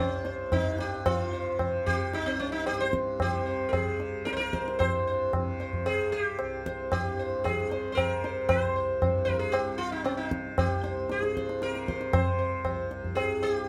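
A plectrum-plucked sitar leads up front with a round, buzzing voice and shimmering sympathetic strings, singing a meditative, longing melody from C4 to C5 in raga bhairavi on C, while close, dry, high-tuned tabla with a short ring keeps a straight 7/4 cycle near 114 BPM that gradually speeds up. Beneath them a softly plucked tanpura holds a low, warm drone, and the trio plays live together in a small room with moderate reverb in this Hindustani classical passage, cut from a longer piece, that moves into a new section at 4.8 seconds.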